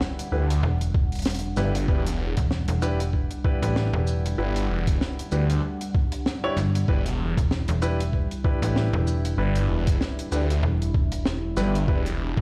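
Funky and swaggering, this glitch hop cut at 96 BPM with a swung 16th feel sits on a single E minor seventh chord, where a gritty, thumpy electronic kick from 0.9 seconds and a compact cocktail kit of hi-hat, shaker and high-tuned snare with a dark, rolled-off tone drive two up-front basses, a swirling, saturated phased saw bass and a snappy, metallic FM slap bass, while a grand piano adds short stabs with 12-bit sampler grit and tape echo over a deep, moody analog pad pumping in the background, all under a layer of vinyl crackle.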